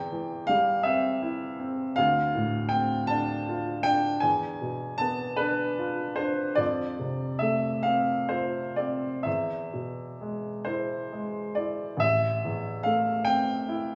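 Wistful and mournful, this excerpt from a romantic classical nocturne unfolds at a slow, rubato pace of roughly 41 to 55 beats per minute in 12/8, tuned to A4 = 442 Hz. A single baby grand piano carries everything across its 13.9 seconds, its tone warm, open and up front, spanning a range from A1 to A5. The harmony drifts from C/E through Dm7 and a tense E7b9 before settling on F, then leans on E at 9.3 seconds and comes to rest on A minor at 12.0 seconds. The piano sits in a recital hall with a generous, wet reverb that lingers around 1.7 seconds, lending the notes a soft halo within a studio-like ambience. The effect is intimate yet spacious, a brief, sorrowful reflection cut from a longer piece.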